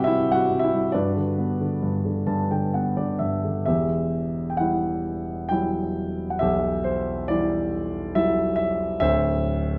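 Rubato and uneven beats shape this calm, lyrical classical solo piano passage in 3/4 at around 67 BPM, cut from a longer piece, as it moves from G major into E minor at 3.7 s. A concert grand, up front and warm with a deep bass reaching down to D1, plays alone throughout. After opening on Cmaj7 and Gmaj7, it adds a fill from 1.8 s that carries the Gmaj7 harmony into an Emadd9. The production is dark, set in a moderate recital hall reverb.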